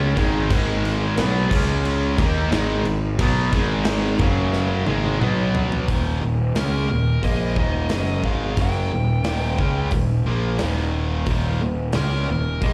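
Hard rock at 89 BPM in a straight 4/4, powerful and energetic, cut from a longer piece and heard as a live gig through a club PA, with a fuzzy, round, dark picked bass up front under two bright, overdriven guitar riffs with slapback echo and a tight, double-tracked distorted guitar that drops out at 5.9 s along with a barely audible, smooth tonewheel organ on slow rotary. A big acoustic rock kit with a punchy kick, medium-tuned snare and bright cymbals enters at 0.2 s and closes the opening section with a fill from 4.5 s. At 6.6 s a nasal lead guitar with a parked wah takes the melody in a higher register, overdriven and touched with slapback echo.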